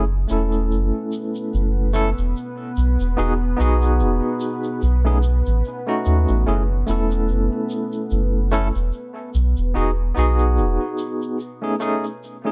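A barky, bright tine electric piano sits up front with tremolo and tape echo, accompanying over F#m7, Emaj7 and B7 in this melancholic, dark trip hop excerpt at 73 BPM in F# dorian with swung sixteenths. A deep, round dub sub bass anchors the low end until 10.8 s, while a moody, detuned sawtooth pad with chorus and its own reverb enters at 1.0 s. A close, dry tube shaker ticks throughout in an otherwise dry mix that thins into a break at 11.4 s.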